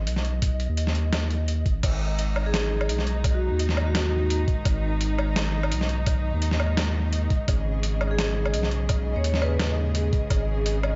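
Half-time drum and bass at 170 BPM in G# minor, this heavy, cinematic excerpt is cut from a longer piece and holds a lightly swung sixteenth-note feel. A saturated, deep triangle sub bass sits up front from the start, joined by a pulsing, detuned gated texture with chorus and its own reverb glowing in the background. Gritty, pitched-down sampler-style drums re-recorded in a large room carry crash cymbal, hi-hat, a medium-tuned snare and woodblock, while a compressed, thumpy electronic kick enters at 0.4 seconds. A clear symphonic string section arrives at 1.8 seconds with smooth, bowed ensemble chords and light vibrato, pumping under sidechain compression. A metallic, ringing vibraphone struck with hard mallets, motor off, plays brief melodic phrases from 2.5 seconds and again near 8.1 seconds, set back in a boxy small room with vintage 12-bit sampler grit and dub echo. The overall sound is dark and rolled off at the top, with light reverb.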